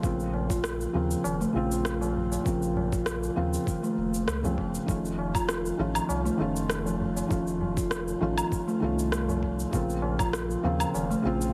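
A lightly swung groove of gritty, thumpy overdriven electronic kick and layered shaker, rim click and woodblock carries this earthy, mystical organic downtempo excerpt, with a low-tuned acoustic tabla sitting in the background from 0.3 seconds and the kick dropping out at 10.3 seconds. Up front, a soft, felt-muted upright piano with audible action noise plays dark accompanying chords through a low-pass filter, sidechain pumping and digital delay, while a steel tongue drum struck with firm rubber mallets rings out pure, meditative arpeggios through its own delay over a round sine sub bass that also pumps. The mix has a heavily compressed, radio-like sound with lossy artefacts and a light small-room reverb.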